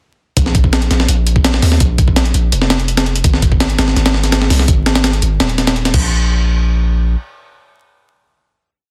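A heavily chopped, straight breakbeat drives this short, nostalgic and atmospheric drum and bass piece, its pitched-up, gritty drum kit pairing a thumpy kick and medium-tuned snare with hi-hat and crash, tape-colored and re-recorded in a small room. Beneath it, a deep, sine-toned 808-style bass plays a dub-style line of long, decaying notes with a fast attack, and both parts sit up front from 0.4 seconds. The drums stop at 6.0 seconds, leaving the bass to carry the final hit until 7.2 seconds, all in a dry, dense, heavily limited master dusted with vinyl crackle.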